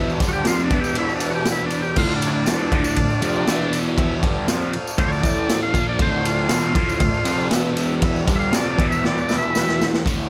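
Raw and menacing, this garage rock cut, taken from a longer piece, drives along at 119 BPM in a straight 4/4 in D minor, its harmony swinging between Dm and E5 with a brief stop on A5. An overdriven semi-hollow guitar, bright and double-tracked, plays a low picked riff through a phaser, sitting up front beside a raw, saturated drum kit with a boomy kick, medium-tuned snare, crash and ride, its gritty tone rolled off at the top. Over them an overdriven combo organ takes the lead as a solo across the whole stretch, its buzzy vintage voice soaked in heavy vibrato and a digital delay. Beneath it a second, clean combo organ holds sustained chords very quietly, while a jingly tambourine sounds in the background of a live room. The sound is dry, with a faint mains hum, and a drum fill from 9.0 to 10.0 seconds closes the passage.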